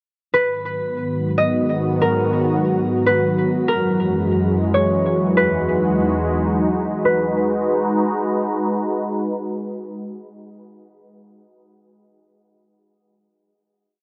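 Hip hop in an atmospheric cloud-rap vein, this ethereal, hazy piece in free time and G# minor sets a sparse, ringing concert harp loop, fingerpicked and softened by low-pass filtering and tape echo, over an airy, detuned sawtooth pad with chorus that sustains G#m9, F#9 and Emaj9 through a filter sweep, before the harp stops at 9.1 seconds and the pad holds the final G#m9 until 11.2 seconds, steeped in moderate shimmer reverb and dark production.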